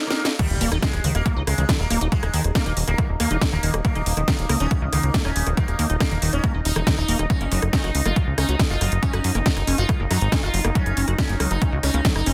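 Psychedelic trance at 139 BPM in a straight 4/4, driving and alien in mood, heard here as a section cut from a longer piece. A very quiet electronic swell and impact open it alongside a short drum fill. The drop lands at 0.4 seconds with a punchy, overdriven electronic kick, and a plucky analog bass follows up front. That sawtooth-and-pulse bass is funky and evolving, with a fast-attack filter pluck, while a squelchy, resonant liquid acid bass riff sits in the background with chorus and sidechain pumping. A bright, buzzing sitar carries the melody from the start, its sympathetic strings shimmering through phaser, dub echo and pumping. An overdriven drum kit adds a cracking snare, bright hats, rim clicks and crash. From 1.7 seconds an overtone-sweeping drone holds slow-attack chords with chorus and its own reverb, while the harmony moves from Eb5 to Gb5 at 7.3 seconds. The mix is dry, dense and heavily limited.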